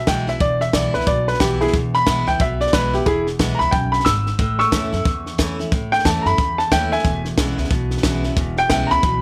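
A small, close room frames this rowdy, upbeat rockabilly excerpt, cut from a longer piece and driven by a brisk swing feel in four. A dark upright piano sits up front and carries the melody as a solo throughout, its tone mellow, woody and smooth with a vintage character. Beneath it, a picked steel-string acoustic guitar plays accompaniment with bright, full-bodied fresh strings, while a plucked upright bass adds a thumpy, woody low end. A compact cocktail kit, dry and punchy with a high-tuned snare, keeps hi-hat, kick and snare close to the listener. The harmony moves from E to A and back to E, and at 7.0 seconds an electric guitar through a small old amp slips in with a compressed, slightly broken-up riff low in its range.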